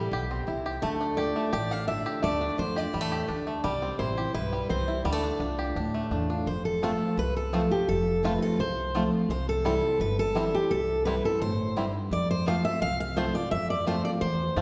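A bright, up-front picked steel-string acoustic guitar carries the melody in this rustic, haunting bluegrass excerpt, its fresh strings ringing out at a brisk 170 BPM in a straight 4/4. Beneath it, a second dreadnought guitar plays full-bodied accompaniment, with an occasional finger squeak. A twangy, percussive banjo, played with fingerpicks, weaves arpeggios through the middle of the texture, while a woody, thumpy upright bass plucks pizzicato lines low in the mix. The opening passage moves between C and Dm, and a second section arrives at 6.5 s, shifting between F and C. All four parts play throughout, bathed in a lush, reverberant hall sound that lends the rustic picking a spacious, haunting air.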